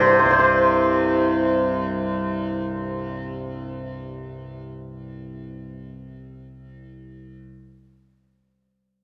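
A home cassette recording with light reverb and the intimate air of a small room frames this serene, meditative fragment of Indian classical music, cut from a longer piece. A hammered santur plays a brief, ringing melody with a cassette-tinged shimmer, falling silent at 3.0 seconds. Up front, a mellow, softly plucked tanpura holds a low, buzzing drone through to 7.4 seconds.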